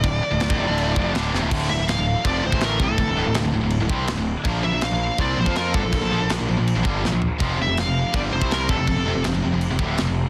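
A straight 4/4 pulse from a tight metal drum kit drives this relentless, dark heavy metal excerpt, with a tight kick carrying soft clipping, a medium-tuned snare, crash cymbal and toms, plus fills near 1.3 seconds and from 7.0 to 7.4 seconds. The kit sits up front with a rolled-off top, beside a growly fuzz bass, picked and overdriven, that anchors the low end. Three picked rhythm guitars churn out the riff in the background: one tight and distorted, one high-gain, and a double-tracked overdriven guitar kept very quiet. Over them, a high-gain lead guitar carries the melody up front, its bright distorted tone trailed by delay. A very quiet detuned sawtooth pad with chorus and a soft attack holds sustained chords underneath as the harmony moves from Dm to Bb5 and then F5. Studio reverb and a dense, heavily limited modern master pack the whole band into a crushing wall of sound.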